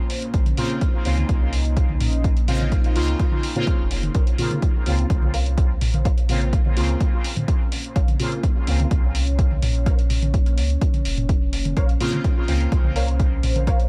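A punchy, layered electronic kick drives a straight pulse, sitting up front in this hypnotic, nocturnal dub techno passage cut from a longer piece. Around it, a muffled, pitched-down hi-hat with a small-room character and analog, tape-warm electronic toms tucked into the background fill out the groove, while a deep, round sub bass in a soft triangle-and-square tone pumps beneath. A moody, dark ambient pad holds a single sustained minor chord throughout, its detuned, wave-folded layers blooming slowly through chorus and reverb and breathing with the sidechain. From 0.6 seconds a juicy, resonant polysynth carries stabs with a sweeping filter, phaser and dub echo, dropping out at 8.8 seconds and briefly returning near the end. A muted, filtered chord stab with a short, plucky decay joins at 4.1 seconds as a quiet background riff, its phaser and ensemble chorus trailing into echoes within a digital ambience.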